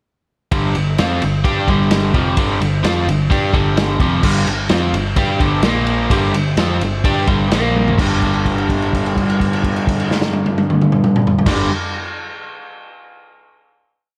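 A bright, double-tracked overdriven electric guitar drives this heavy, brooding blues rock and southern rock power trio piece at 128 BPM in G minor, playing a compressed power-chord riff doubled by a round, foam-muted electric bass in driving eighth notes, while a muffled vintage drum kit with dark cymbals and a tight kick lays down a big rock groove in a small room, until a drum fill at 7.8 seconds leads into a final chord held from 8.0 to 11.5 seconds under light studio reverb.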